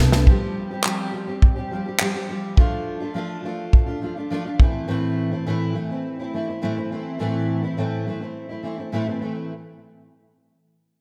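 A drum fill opens this tender, wistful acoustic pop excerpt as a fingerpicked steel-string acoustic guitar begins, moving at 104 BPM in a straight 4/4 in A minor. The guitar is double-tracked and sits up front, its fresh strings giving a warm tone where finger squeak can be heard, and it ranges from A2 to A4. A natural country drum kit, airy and polished, adds handclaps, a punchy kick and a medium-tuned snare, then drops out at 4.7 seconds so the guitar carries on alone until 9.5 seconds. The harmony drifts from Fsus2 to Dm/F and settles on Am. A moderate plate reverb and a touch of small-room ambience soak the mix in a dreamy haze.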